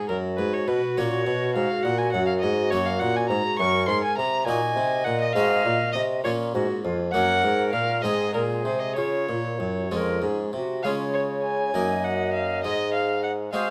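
The excerpt opens with an alto recorder, a violin and a harpsichord together in a serene, dance-like baroque-style sonata movement in 6/8, moving at 67 dotted-quarter beats per minute with a flexible, rubato feel. A solo bassoon joins at 0.1 s to carry the bass. The recorder takes the melody with an airy, wooden tone, audible chiff and tongued attacks, and expressive vibrato, while the single gut-strung violin plays a second line above it in period style, its bowed sound rich and slightly reedy. The harpsichord accompanies from up front, its plucked Flemish-style tone bright, dry and full, as the bassoon adds a warm foundation with light vibrato. Beginning in F# major, the music settles into Db major from 3.6 s, passing through chords such as Bbm, Gb and Ab7 before a brief new section arrives at 10.9 s. Light reverb surrounds the ensemble, and the passage is cut from a longer piece.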